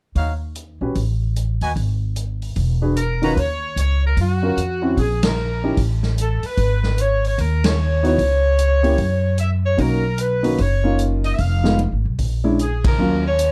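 Big band swing in Eb minor at 150 BPM, this sultry, brassy excerpt opens with trumpet section stabs over growly pizzicato upright bass and a roomy, distant drum kit with dark cymbals and a punchy kick, as vintage-toned grand piano comping joins at 0.8 seconds and a smooth, tight saxophone section takes the melody from 3.0 seconds, with band accents punctuating the line under light reverb and a dark production.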